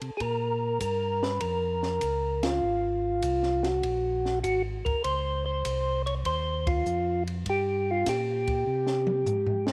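The recording sits in a moderate spring reverb with a studio ambience, giving this short excerpt from a longer soul jazz organ trio a smoky, bluesy cast. A mellow tonewheel organ carries the bass line in its low register, lightly overdriven with chorus vibrato and a slow rotary speaker, its round tone placed up front. Above it, a second tonewheel organ takes the melody from 0.2 seconds, clean and percussive with third harmonic percussion and its own slow rotary speaker. A compact acoustic cocktail kit in a small room swings on hi-hat, ride, snare, kick and toms, with dark cymbals, a high-tuned snare and a punchy kick. The band hits accents together at 2.3 and 6.6 seconds, and the drums close with a fill from 8.7 seconds as the harmony moves from Bbm through Ab9, Dbmaj9 and Gm7 to C5.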